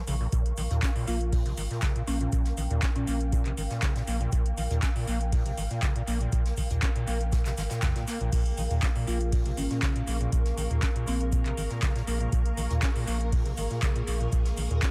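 A straight 4/4 acid house groove at 120 BPM, this raw, playful cut from a longer piece rides on an overdriven electronic kick with a deep analog thump alongside an electro drum machine of metallic hi-hats, handclaps and crash cymbal, itself overdriven and thrown into dub echo. A brushed jazz kit of hi-hat, shaker and snare sits in the background, its high-passed, pumping hats and percussion adding a polished acoustic layer. Underneath, a thick, saturated triangle sub bass pumps against the kick, while a squelchy, gritty square-wave acid bass plays the riff with a resonant filter sweep, distortion, lush chorus and dub echo, all over a single Bbm7 chord. An ethereal, detuned pad drifts high above with slow attack, chorus and built-in reverb, and a woody, dark marimba adds brief melodic phrases at 1.1 and 9.1 seconds, echoing into the mix. From 8.3 seconds a vintage sawtooth string machine brings sustained, phased chords, and the whole piece sits in a small, echo-heavy room.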